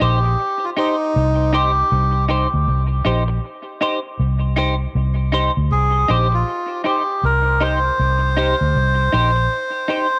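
A reedy, breathy melodica carries the melody up front in this short, meditative dub reggae excerpt at 79 BPM in C minor, its tone colored by cassette tape and trailed by dub echo. Beneath it, a muted fingered electric bass sits round and punchy in the low register until about 9.5 seconds, while a clean, compressed electric guitar accompanies with analog chorus, tape grain and its own dub echo. The excerpt rests on a single C minor chord with a swung 16th-note feel, set in a moderate spring reverb and the character of a home cassette recording.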